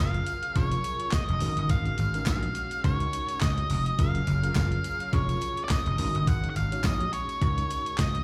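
A dark, fuzz-drenched lead guitar with slapback echo carries the melody from the start over growly, punchy slap bass, a mellow tine electric piano and a brassy, detuned analog pad with chorus in the background, before a crisp 8-bit drum machine with a thumpy kick, handclaps, hi-hat and snare joins at 0.1 s and a jingly tambourine follows at 0.3 s, shaping a danceable, feel-good early-eighties boogie funk groove with swung sixteenths, heard live through a club PA with reverb and cut from a longer piece.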